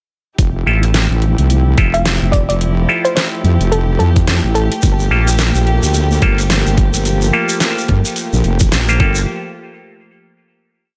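A heavy, wobbling sawtooth bass arrives at 0.4 s together with a knocking, overdriven electronic kick, a deep snare, bright closed hats and a soft, dark string pad bowed sul tasto, launching this funky, playful glitch hop piece straight into its drop. The swung beat is cut up with edits, while the saturated, chorused bass sits up front, spinning out modulated phrases whose wobble speed keeps changing. A hollow, nasal auto-wah clav adds sparse, echoing chord stabs in close voicing, pumping with sidechain compression just as the strings do. From 1.9 s, a woody, wave-folded pluck with a short decay plays brief answering phrases through chorus and digital delay. Midway through the drop, the harmony moves from Fmaj9 to Gm9, and a grainy hand-played shekere joins with sixteenth notes. The mix is dry, and the piece closes on a final hit.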